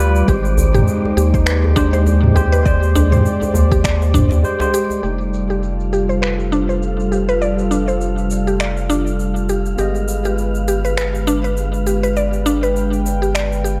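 A round, mellow analog bass sits up front in this earthy, mystical organic downtempo piece, moving at 101 BPM in 4/4 with a gentle 16th-note swing. A woody, bright mallet-like synth pluck spins chorused arpeggios with tape echo, while a smooth, detuned analog pad holds sustained chords and a worn, slightly out-of-tune tine electric piano adds filtered, echoing accompaniment. Both the pad and the electric piano pump against the beat, as does the bass, and an airy, breathy wind-like noise texture drifts in the background. A deep, overdriven electronic kick drives the opening until 4.3 seconds, joined by a tight, cracking djembe and an overdriven deep house kit of cabasa, finger snaps and toms. After a brief break, a filter sweep on the synth pluck begins at 5.0 seconds as the harmony moves from Abmaj7 to F9 and then G7b9b13. The production is dark with light reverb, and the excerpt is cut from a longer piece.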